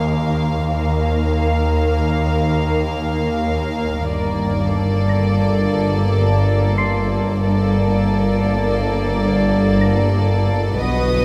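A straight 5/4 pulse at 89 BPM underpins this ominous, uneasy suspense film-score fragment, where soft-attack sul tasto violin sections carry a pure, floating melody and a second line over dark bowed double basses, an intimate cello section with light vibrato and a swarming, detuned granular drone, while a delicate, bell-like celesta glints in the background, a rich chamber violin section appears at 10.8 s, and the harmony shifts from Ebsus2 to Gmadd9 at 4.1 s within a recital hall's reverb.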